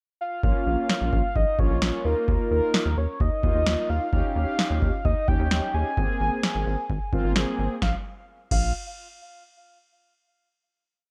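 A cool, nocturnal synth-pop miniature in Bb minor moves at a straight 130 BPM in 4/4, opening with a brief pickup bar before a single verse and a closing chord that rings out to the end. A soft, octave-layered synth lead enters first at 0.2 seconds, carrying a motif-based melody of call phrases with a full, rounded tone built on a detuned triangle and a sub octave, thickened by chorus, vibrato and delay. From 0.4 seconds a mellow synth brass carries the harmony in close voicing with a brassy, dark sound, pushing the chords through Bbm, Ebsus2, Eb7 and Abadd9. Underneath, a rubbery square bass runs a bouncy, hollow sequenced line with a resonant filter pluck, while an electro analog drum machine sits up front with a deep kick, punchy snare and crash cymbal, its sound caught in a large room. The brass drops out at 7.8 seconds as the music settles on a bare Bb5, with light reverb giving the whole piece a touch of space.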